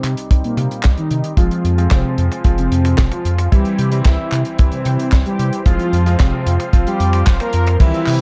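A nostalgic, danceable italo disco groove at 112 BPM in F minor opens with a mellow, brassy synth lead carrying the melody with chorus, delay and vibrato, over a detuned sawtooth pad in the background and gritty, clangy electric grand piano stabs, both with filter sweeps. A deep, round analog bass sits prominently beneath, and a tight funk kit with a high-tuned snare, handclaps, hi-hat, toms and crash is joined at 0.3 seconds by a dry, up-front kick drum. The chords move from Cm7 to Fm, C and back to Fm in a dark production with light studio reverb, in a brief cut from a longer piece.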